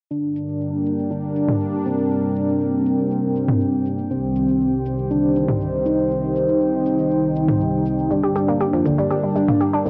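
A thick, detuned unison lead carries the melody of this melancholic, hypnotic melodic techno cut, taken from a longer piece, its mellow sawtooth tone colored by vibrato and tape echo while a filter sweep runs across it. Beneath it, a sweeping resonant pad holds sustained chords with a bright, evolving, ring-modulated body and chorus. A warbly, nostalgic tape-like pad joins at 0.5 seconds, adding a lo-fi, vintage texture with its own built-in reverb. Electronic shaker and toms, layered and up front with low-pass filtering, keep a straight 4/4 pulse at 120 BPM in G minor as the harmony moves from Gm to Cm and back to Gm. At 8.1 seconds a woody, wave-folded pluck enters with dark, percussive arpeggios treated with analog chorus and tape echo. The whole has a dry, gritty hardware sound with light reverb.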